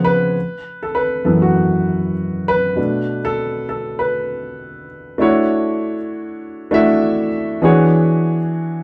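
Cinematic and smooth, this short soul passage is cut from a longer piece and rests entirely on a concert grand piano playing solo. The piano has a warm character with a deep bass and short sustain, sitting up front in the mix and ranging from F#2 to E5. A gentle sixteenth-note swing gives the 4/4 pulse an easy, unhurried lilt. The harmony moves from F#7sus4 to Bm7 in the opening stretch, then shifts at 5.2 seconds to Dmaj9 and E13, lending the close a lush, open colour. A moderate studio reverb places the instrument in a room with a sense of live, natural presence.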